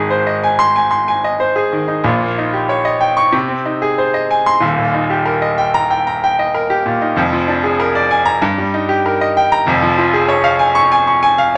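A bright concert grand piano, up front with a brilliant, open tone, deep bass and short sustain, plays alone through this heroic, sparkling 11.6-second cut from a virtuoso classical piano study, its rubato phrasing ranging from Eb1 to Db6 in a moderate studio reverb.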